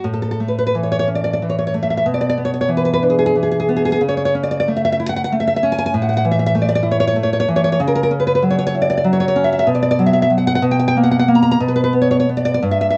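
A romantic solo classical guitar piece in A major, tender and sunny in mood, it moves in a rubato 6/8 at roughly 55-66 BPM counted in dotted quarters. The nylon-string guitar plays alone throughout the 13.0 seconds, fingerpicked and placed up front, with a dark, acoustic tone and audible finger squeak, ranging from G2 up to A#5. Its harmony opens on A, passes through E5/B and A/C#, and later reaches F#5/C# and B5 before settling on F#add11/B at 10.6 seconds, then leaves chordal harmony behind at 11.6 seconds. The instrument is tuned slightly high, to A4 = 445 Hz, and was recorded live in a single room with moderate studio reverb. The top end is rolled off above 8.0 kHz, and the passage is cut from a longer piece.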